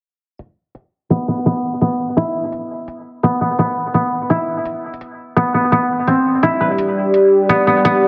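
A bright, overdriven electronic hi-hat opens this spacious, heavy half-time drum and bass excerpt, joined at 1.1 seconds by an up-front koto playing woody, fingerpicked arpeggios through a low-pass filter and dub echo, with a filter sweep running across the passage. At 6.1 seconds a dark analog pad arrives with detuned sawtooth chords and a sub octave, its slow attack and chorus moving the harmony from Bsus4 to C. A moderate echo chamber reverb and heavily compressed, filtered radio-like sound give the whole a moody, boxed-in depth.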